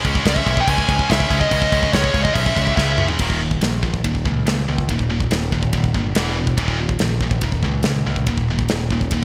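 Bright, 1980s-style digital production with light reverb frames this heavy, aggressive metal snippet, cut from a longer piece, in straight 4/4. A double-tracked, high-gain guitar drives the riff up front over a growling, overdriven picked bass and a punchy studio drum kit with a medium-tuned snare and bright cymbals. A nasal lead guitar with a parked wah, overdrive and delay sings a short melody from 0.3 to 3.1 seconds, and a drum fill at 2.8 seconds leads into a new passage of power chords.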